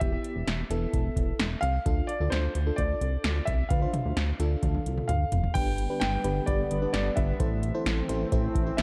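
An up-front electro analog drum machine, with a deep kick, punchy snare and metallic hats re-recorded in a large room, drives this nostalgic yet bright synth-pop excerpt at 130 BPM in 4/4, joined by a glossy, chorused synth bass and a fill from 4.6 to 5.6 seconds. A present grand piano with tape echo carries the melody over a tremolo-laden FM electric piano run through a phaser, moving through Em, Dm, G and Am. At 5.8 seconds a detuned, resonant sawtooth pad enters with slow-swelling sustained chords, all set in a dark production with light reverb, tuned to A4 = 441 Hz.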